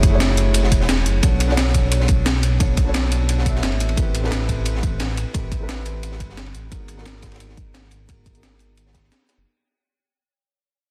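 A dense, heavily limited mix with light reverb carries this rolling, lush liquid drum and bass excerpt at 175 BPM: a deep, rumbling detuned saw bass sits up front beneath a soft, mellow felt-muted upright piano treated with tape echo and a filter sweep, while a punchy layered electronic kick, a compressed, pitched-up sampler-style break with gritty snare and hi-hat, and a dark, saturated acoustic break with ride cymbal and high-tuned snare drive through F#m7, Bm7, Am7 and G#m7 as the passage fades out over its 9.5 seconds.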